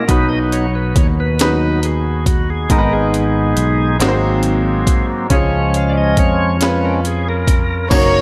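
A small, lightly reverberant room frames this short cut from a slow, reverent yet jubilant gospel piece in 6/8 at 46 BPM, where a reedy, key-clicking tonewheel organ turning through a slow rotary speaker takes the solo over chords of B, G#m, G#7 and C#, backed by a brilliant concert grand piano, a round, punchy fingered electric bass and a gritty, pitched-up breakbeat kit with a thumpy kick, until at 7.9 s an intimate, bowed string section with slapback echo enters up front and a jingly tambourine sounds in the background.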